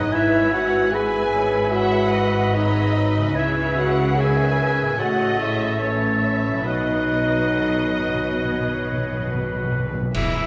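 A tender, lyrical slow romantic movement for symphony orchestra opens with a veiled, con sordino violin section carrying the melody in a rubato 4/4 around 67-77 BPM, framed by muted violas, cellos and double basses, mellow French horn chords, a hollow flute ensemble, clarinet, a roomy oboe, a dark bassoon and a ringing, fingerpicked concert harp playing arpeggios, all in the reverberant wash of a concert hall. The harmony moves from E/G# through C#m7 and A to B, where soft-mallet timpani enter at 6.7 s with a round fill. Dry, up-front clash cymbals and concert bass drum strike a bright accent at 10.1 s as this fragment of a longer piece breaks off.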